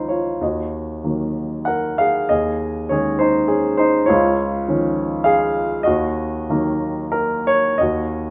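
A warm grand piano carries this short classical fragment alone, its tone present, polished and placed up front, reaching from Db2 up to Gb5. The mood is moody and bittersweet, with a lyrical line shaped by free rubato in a gentle three-beat metre. Beneath it the harmony moves from Ebm through Absus4/Eb and Dbadd9 before settling back on Ebm at 5.9 seconds. The instrument sits in a moderate recital hall reverb that lends the notes a measured halo. Cut from a longer piece, the passage lasts just over eight seconds, with the piano sounding from the start to 8.3 seconds.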